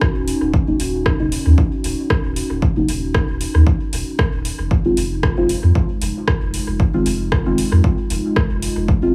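A dark, detuned analog pad with chorus, phaser, sidechain pumping and 12-bit sampler grit opens this nocturnal, meditative dub techno cut at 115 BPM in F phrygian, together with a punchy, up-front electronic kick and an overdriven deep house kit of metallic hi-hats and rim clicks, soaked in dub echo. The drums carry a lightly swung 16th-note feel, while a clean pure sine sub bass enters at 0.2 seconds. At 0.7 seconds a soft, nasal, full-bodied chord stab joins with chorus, phaser, dub echo and a filter sweep, moving from Ebm7 to Fm7 in an echo-heavy mix with light digital ambience.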